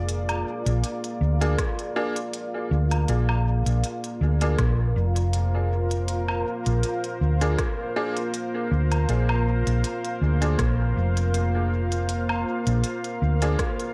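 A light reverb hangs over this hazy, peaceful slice of ambient dub, cut from a longer piece and set at 80 BPM in 4/4 with a gentle swing on the sixteenths, sitting in Bb mixolydian on a single Bb7 chord. A deep, moody pad of detuned sawtooth and sine layers with a sub octave holds sustained chords from the start, its slow attack and long release softened further by chorus and its own reverb. Up front, a round, dark hollow-body electric bass is fingered low in its range, the loudest voice in the mix. An organic electronic drum kit supplies crisp hi-hats, rim clicks and woodblock that trail off in dub echo, joined at 1.6 seconds by a deep electronic kick, both re-recorded in a large room for an airy sense of space. From 1.4 seconds, a bright, worn upright piano adds woody, slightly detuned stabs with audible action noise and long sustain, its intimate tone also thrown into dub echo.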